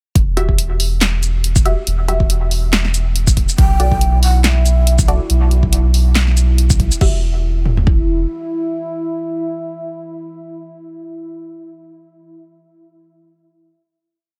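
Set in a digital ambience, this brooding, dark deep dubstep piece at 140 BPM in E minor moves in a swung half-time groove, where a round, up-front sub bass with tube saturation plays long gliding notes under a deep kick and toms, and a punchy snare, claps, hats, shaker and crash carry a small-room character; muted, detuned chord stabs with phaser and dub echo sound sparsely throughout, a breathy bamboo shakuhachi with vibrato offers call phrases with dub echo from 3.6 s, and a moody sawtooth pad drone with chorus enters at 4.1 s and sustains through the final Emadd9 chord from 7.0 s.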